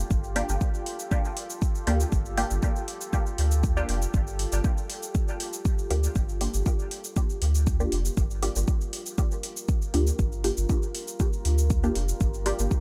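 Dub techno at 119 BPM in G minor, this hazy, deep excerpt rests on a single Gm7 chord, with a slow-blooming pad swathed in chorus and reverb and muted, detuned chord stabs passing through phaser and dub echo, both pumping against the sidechain. A round, soft sub bass sits up front beside a deep electronic kick. Overdriven metallic cabasa and hi-hats, re-recorded in a large room, sit back in the mix.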